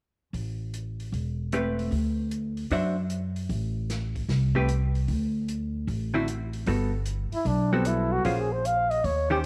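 Small-group swing and bop jazz with a relaxed, easy feel, this excerpt opens on a woody, growly pizzicato upright bass and an airy, polished drum kit with a boomy kick, joined at 1.5 seconds by a dark, clean hollow-body guitar playing picked, compressed accompaniment. At 7.3 seconds a mellow flugelhorn steps up front with the melody, its vibrato, soft attack and smooth top touched by a slapback echo, shortly after the tune moves into a new section. Light reverb and small-room ambience give the performance an intimate, close-knit setting.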